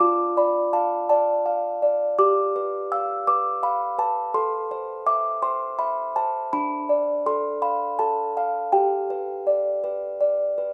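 Classical lullaby for solo music box in 6/8, tender and dreamy in mood, cut from a longer piece. The small box sounds delicate and tinkling, mellow yet slightly out of tune, sitting up front over a moderate recital-hall reverb. Its plucked tones span from D4 to E6 across the roughly 10.7-second passage, moving through a soft chord progression that comes to rest on G.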